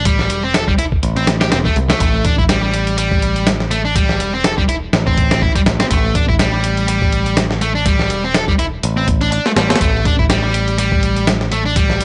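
A dry, gritty hardware recording with a dull top end and a faint mains hum frames this funky, energetic breakbeat excerpt, cut from a longer piece. It moves at 123 BPM in 4/4 with a 56% swing on the sixteenths, and the whole passage rests on a single A5 chord. The dusty soul sampler-style drum kit enters at 0.1 seconds, compressed and tape-warm, with a thumpy kick, a medium-tuned snare and hi-hat, re-recorded in a large room yet placed up front. A sludgy electric guitar drives the riff from the start, bright and overdriven with tube saturation and tape echo, also sitting up front. Beneath it, a picked electric bass holds the low end, captured direct and through an amp.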